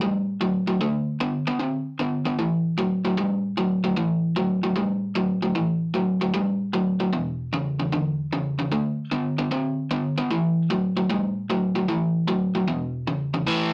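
A bright, overdriven electric guitar, picked and up front, plays alone through a rollicking, soulful blues in A mixolydian at 152 BPM with a 68% swing on the eighths, moving through A5, D5 and E5 power chords in a moderate studio reverb, tuned to A4 = 442 Hz, in a short section cut from a longer piece.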